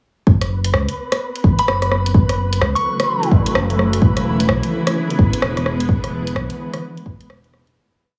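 A muffled two-step kick and a skittering, shuffled, overdriven hat-and-rim beat drive this ghostly, rainy future garage piece, where a round dub-style sub bass pumps beneath a blurred granular cloud pad arriving at 2.8 seconds, a soft warbling FM bell plays brief phrases between 1.6 and 3.2 seconds, a flickering grainy high note hovers throughout, and the whole track, heavily compressed with a cassette-tape radio sound, moves from F#m7 to E7 before fading out from 5.3 seconds.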